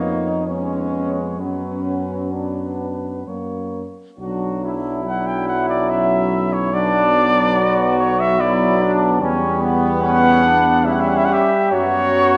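A mellow-sounding cornet leads up front with vibrato and a soft attack, singing a yearning, melancholic melody in this classical, hymn-like brass band piece in 3/4 time, played with a flexible rubato feel. A warm French horn section with light vibrato carries a second line, while a clear euphonium and a distant, roomy trombone section fill in the accompaniment over a mellow tuba bass. All five parts play throughout in a wet concert hall reverb, with a new passage beginning at 4.2 seconds, and the excerpt is cut from a longer piece.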